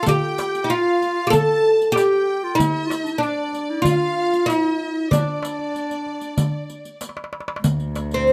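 An up-front oud opens this soulful, melancholic excerpt of an Arabic maqam ensemble, carrying the melody in D maqam bayati with a bright, woody tone from its plucked, fretless double strings. Alongside it from the start, a clear, lush symphonic violin section sits distant in the background with intense vibrato, while a clarinet with a smooth top adds a classical-style second line beneath. A crisp, small metal-shell darbuka, close and dry and played with soft hands, drives a straight 4/4 pulse at 95 BPM, joined by a riq whose dark jingles sound compressed and saturated. As a drum fill begins at 7.0 seconds the violins and clarinet drop out, and at 7.6 seconds a single bowed cello enters on a low D drone, soft in attack, pure and floating in its sul tasto tone. The moderate studio reverb and close, detailed microphones keep the ensemble intimate and present.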